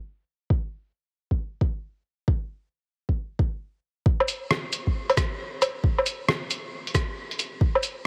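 Heavily compressed and low-pass filtered like an old radio broadcast in light reverb, this ghostly, melancholic future garage excerpt at 135 BPM with a 16th-note swing opens at 0.5 seconds on a soft, up-front electronic kick drum, joined at 4.2 seconds by a muffled, pitched-down, tape-warm sampler-style kit of cabasa, hi-hat, rim click and woodblock, both parts sounding re-recorded in a small room.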